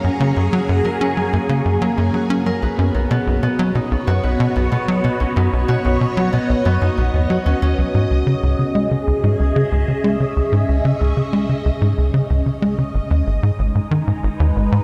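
Ambient, sequencer-driven space music at 93 BPM in C# dorian, cosmic and mysterious, where a punchy sawtooth-and-square sequencer bass riff with tape echo drives up front beneath swirling, vintage string-machine chords thickened by ensemble chorus and phaser, while a bright, ringing Celtic harp plays fingerpicked arpeggios through tape echo until 10.5 s, the whole excerpt set in a vast cathedral reverb as the harmony moves from F# and Badd9 to C#m7 and G#m.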